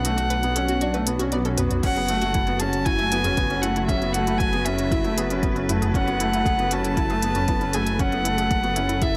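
Piano and strings electronica in F# minor at 117 BPM, hypnotic and moving, cut from a longer piece and moving from Bm7 to F#m11. A dark, nasal, reedy solo violin carries the melody up front with delay, over a veiled con sordino string quartet holding sustained chords, a felt-muted upright piano playing a soft, mellow riff with delay, a rumbling detuned saw bass, and a round analog pluck tracing arpeggios with chorus and delay in the background, the quartet, bass and pluck all pumping with sidechain. An organic electronic drum kit with crisp hats, crash and toms plays throughout, joined at 1.8 seconds by a deep, layered electronic kick, all set in a moderate recital hall reverb.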